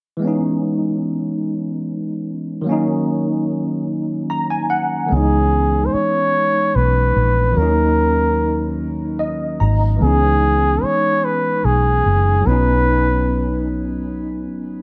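Slow six-eight R&B with a sultry, yearning mood, cut from a longer piece, opens on a bright, barky tine electric piano through a combo amp, dressed in ensemble chorus and plate reverb, moving between C#m9 and D#m7 and adding short fills at 3.9 and 8.8 seconds. At 5.1 seconds a mellow flugelhorn enters up front with a smooth top and jazz-style vibrato, carrying a solo melody in plate reverb, while a dark, round, foam-muted fingered electric bass joins underneath. The harmony settles onto Badd9 near the close, all in a moderate studio room.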